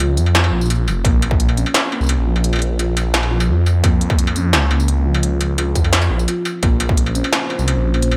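A half-time 4/4 pulse at 172 BPM drives this tense, heavy drum and bass excerpt in Bbmadd9, where an up-front industrial drum kit with clanging snare, smooth hats, tambourine and struck metal in gated reverb plays alongside a swirling, thick phased detuned saw bass and a felt-muted upright piano playing soft, boxy arpeggios through digital delay, while a distorted electronic kick hits briefly at 1.0 seconds and returns from 3.8 seconds, and after a short break a moody analog pad with chorus and sidechain pumping enters at 6.6 seconds, set in bright 1980s-style digital production with light reverb.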